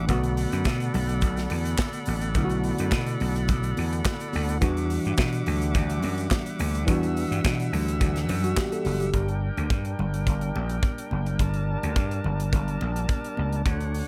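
Disco with a glamorous, celebratory mood, cut from a longer piece. A growly, amped slap bass sits up front beside a punchy acoustic drum kit of kick, medium-tuned snare, hi-hat and handclaps in an airy small room. A worn, slightly out-of-tune tine electric piano with light overdrive plays accompaniment over Bm7 and Em9, while a reedy tonewheel organ with key click holds sustained chords through a slow rotary speaker, and very quiet high-tuned congas and a distant, grainy egg shaker add percussion; at 9.1 seconds the harmony moves to Gm as the shaker drops out, the electric piano stops at 9.3 seconds, and the organ, bass, drums and congas carry on.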